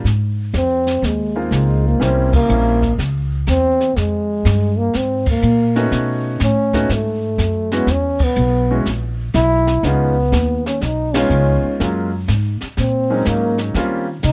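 A woody, thumpy pizzicato upright bass on gut strings opens this relaxed small-group swing and bop excerpt, joined almost at once by a brush kit with dark cymbals, a high-tuned snare and a boomy kick in a small room. A breathy trombone carries the solo melody with light vibrato and a smooth top, while a clear concert grand piano with deep bass comps from 1.4 seconds, drops out, and returns at 5.8 seconds, with the band striking accents together along the way. The production is dry and mellow, with bass, trombone and piano up front.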